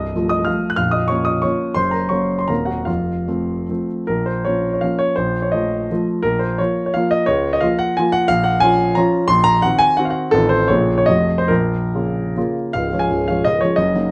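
This is a classical, romantic triple-time dance for solo grand piano, built on dotted rhythms and taken from a longer piece. The mood is wistful and nostalgic, and the pulse bends freely with rubato as the phrases unfold. The piano has a warm, intimate character and sits up front, its short sustain and audible action noise giving the sense of a listener close to the instrument. A moderate studio reverb from a large room adds space around the notes. The music opens with a brief phrase, moves into a longer passage from 4.1 seconds that circles mostly between tonic and dominant harmonies, then turns toward a new chord at 12.7 seconds just as the recording ends.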